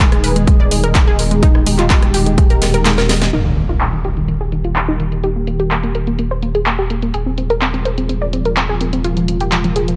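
Progressive house with an uplifting, hopeful mood, cut from a longer piece: a mellow, chorused sawtooth pad holds sustained chords while a lush, detuned unison pluck spins delayed arpeggios over a thick, saturated sine sub bass, all three pumping to the sidechain. A punchy, overdriven kick sits up front until 2.5 s, and an overdriven house kit of handclaps, hi-hat, rim click and cracking snare plays a fill before the kick drops out at 2.9 s. At 3.3 s an electronic impact sounds in the background as filter sweeps run on the drums and the pad, the chords moving from Abm/Eb to Eb and then Fm/Eb in a light digital ambience.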